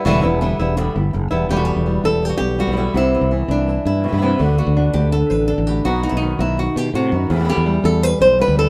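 Mournful and dramatic, this short flamenco passage in E minor moves at a brisk 166 BPM in a straight 4/4. A fingerpicked acoustic flamenco guitar carries the melody up front, its fresh strings giving a bright edge as it ranges from the low E up to C5. A second fingerpicked flamenco guitar plays chordal stabs further back in the mix, its warm tone marked by audible finger squeak. A fretless electric bass enters at 0.1 s and sits up front with a growly, direct sound. The harmony moves from Em7 through Cmaj7, D6 and B before returning to Em7, with the music shifting into a new section at 1.5 s. The band plays live together in one room with moderate studio reverb, and the passage is cut from a longer piece.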